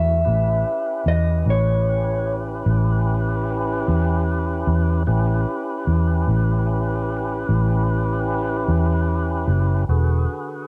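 An up-front, round, foam-muted vintage electric bass anchors this soulful, rollicking slow blues in A mixolydian at 50 BPM in 12/8, beneath fat tonewheel organ chords turning through a slow rotary speaker with audible key click and moving from A9 to E9 at 9.9 s, while a dark, compressed, clean electric guitar sings a brief melody only over the first 2.3 s, the whole cut from a longer piece and captured as a home cassette recording with light reverb.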